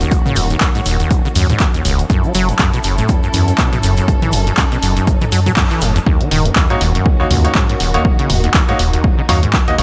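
A swung 4/4 groove drives this hypnotic acid house cut, built on an overdriven electronic kick up front and a punchy analog drum machine of handclaps, hi-hat, snare and toms, with a grainy egg shaker in the background until 6.0 s. A squelchy, resonant sawtooth acid bass with overdrive and chorus plays its riff over a round, deep analog bass, while a dark, woody string section holds lush sustained chords, all three with sidechain pumping. After a band accent at 5.6 s the track drops at 6.1 s, and a brilliant grand piano with audible action noise adds delayed stabs over the dry, gritty mix.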